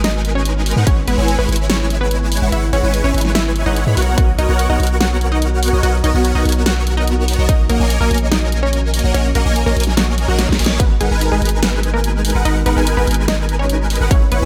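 Dreamy, emotional future bass in G# minor at 145 BPM with a half-time feel, where bright, detuned supersaw chords with ensemble chorus and sidechain pumping sit up front over a deep, mellow sine 808-style bass with tube saturation, a punchy up-front electronic kick, and a dubstep drum kit with a huge snare and hi-hat, while a lush, punchy unison pluck carries the melody through dub echo, a very quiet airy, breathy pad holds sustained chords beneath, and a faint reverse cymbal at 10.2 seconds and a drum fill at 10.4 seconds lead back to G#m7 at 10.8 seconds in this fragment of a longer piece.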